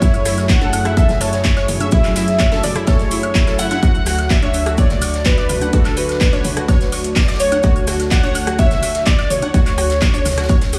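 Over a straight pulse led by a punchy, up-front electronic kick, this dreamy, emotional progressive house excerpt moves from F#m7 to Dmaj7 at 3.8 seconds, with a thick, detuned unison lead carrying the melody through digital delay and sidechain pumping, joined by a very quiet, pure FM bell on a second line, while a lush, bright unison pluck spins delayed arpeggios, a smooth, warbling analog pad holds chorused chords in the background, a funky, plucky analog bass pumps underneath, and a house kit with metallic hats, handclaps, rim clicks and toms is joined by a faint airy kit's ride and snare, grainy maracas and tape-warm electronic woodblock, congas and toms, all in a nearly dry small room.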